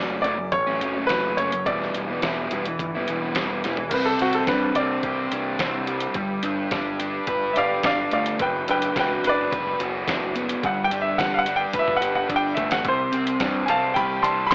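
A bright, woody upright piano leads this carefree, wistful indie rock excerpt at 107 BPM, taking a solo from 3.9 seconds over a double-tracked, overdriven garage guitar riff, a growling picked electric bass and a muffled, pitched-down trip hop sampler-style drum kit with a thumpy kick that enters at 0.2 seconds and fills at 3.6 seconds, while moderate reverb and a cassette-tape, AM-radio haze color the mix as the chords move from F#m through Csus2 and Gadd9.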